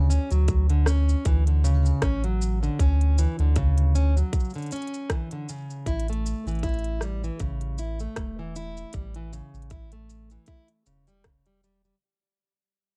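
Folktronica at 78 BPM with a gentle 16th-note swing, hopeful and delicate, where a dark, full-bodied fingerpicked steel-string acoustic guitar plays arpeggios through cassette tape and analog delay over Dmaj7 moving to A7 at 5.9 seconds, underpinned by a deep, round sine sub bass up front, a tight electronic kick and smooth hi-hats alongside rim click and shaker from an organic electronic kit, all dry and homespun in feel before a fade-out from 3.8 seconds in this short cut from a longer piece.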